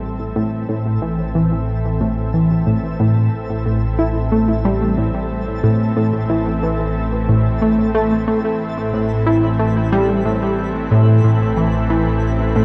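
Expansive and mysterious, this ambient, sequencer-driven space music excerpt rests on a single A minor chord, with a lush, warbling unison pad with chorus fading in over a fat, decaying analog bass while a tight, driving sequenced synth riff with a filter pluck, chorus and analog delay enters up front at 0.4 s, and a twinkling granular texture with octave-up shimmer fades in in the background, all bathed in an echo-heavy chamber reverb.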